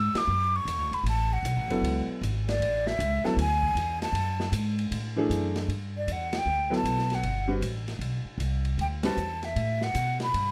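A moderate studio reverb gives this short modal jazz passage, cut from a longer piece, a compact and intimate sound, with the flute, bass and piano sitting up front. A breathy, hollow metal flute carries the melody in a straight, tongued tone, its highs softened to a mellow glow and set in a plate reverb. A woody pizzicato upright bass on steel strings anchors the swung 4/4 beneath it. Further back, an acoustic drum kit from a small room plays hi-hat, ride, snare and kick, with dark cymbals, a medium-tuned snare and a boomy kick. A bright, brilliant upright piano joins at 1.7 s and drops out at 9.2 s, while the harmony shifts from Dadd9 to Gmaj9 at 5.7 s as the second section begins. The band hits several accents together along the way, and the mood stays open and hypnotic throughout.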